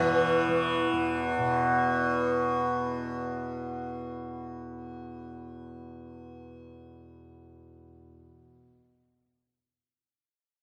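A bright, buzzing, softly plucked tanpura drone sits up front for the full 8.5 seconds of this meditative, longing Indian classical fragment in 5/4, while a round, plectrum-plucked sitar with shimmering sympathetic strings rings on E3 in the background until 3.1 s, both bathed in a wet echo-chamber studio reverb.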